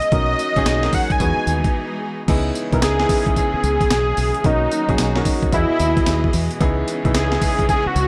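A thick, bright unison lead with a detuned sawtooth edge, vibrato and a trail of delay sits up front, carrying the melody from D#4 to G#5 across this short excerpt of a slick, bouncy new jack swing track in C# dorian at 111 BPM, with a 64% swing on the sixteenths. Beside it, a gritty, overdriven breakbeat kit with the crunch of a vintage 12-bit sampler, pitched up and compressed, punches out a thumpy kick, medium-tuned snare, hi-hat, tambourine and crash. A deep dub fingered electric bass, dark, round and foam-muted, enters at 0.1 seconds and stays low between A#1 and E2. A natural-sounding grand piano plays accompaniment while a lush, bowed studio string section with vibrato holds sustained chords further back. The harmony moves through Bmaj7, Emaj7 and C#m7, with a brief break from 1.7 to 2.3 seconds before the phrase repeats, all set in a digital ambience.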